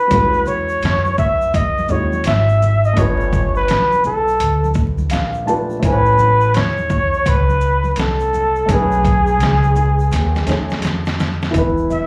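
Heard as a live gig through the venue's PA with club reverb, small-room ambience and vinyl crackle, this smooth, cool jazz-hop excerpt at 84 BPM in E major, swung on the 16ths, sets a breathy, whispered flugelhorn melody with vibrato and slapback echo up front over a dark, mellow upright piano that adds a fill at 4.8 seconds, a woody pizzicato upright bass on gut strings, a gritty, overdriven, pitched-down sampler-style trip hop kit with a thumpy kick that fills from 10.1 seconds, and soft-handed egg shaker and congas tucked in the background.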